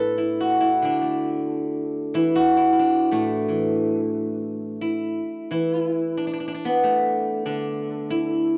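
A dry, close 1970s-style studio sound with a modest booth ambience frames this brief, flowing and serene fragment of Chinese traditional solo plucked-string music, where a bright, silvery steel-string zither sits up front and rings out under fingerpicks in the A zhi mode at 91 BPM in a rubato 2/4 with uneven beats, moving into a new section at 4.8 seconds before the clip, cut from a longer piece, ends at 8.6 seconds.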